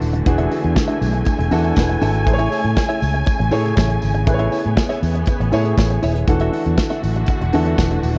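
A punchy, up-front studio drum kit with a medium-tuned snare drives this celebratory, danceable disco excerpt at 120 BPM in A major, joined by a round, dark fingered electric bass, a warm vintage grand piano, lush bowed symphonic strings with expressive vibrato, a clean, compressed electric guitar bathed in spring reverb that enters at 0.1 seconds, and a jingly tambourine tucked in the background, all moving from E9sus4 to Amaj7 and back in a dry, close 1970s-style sound.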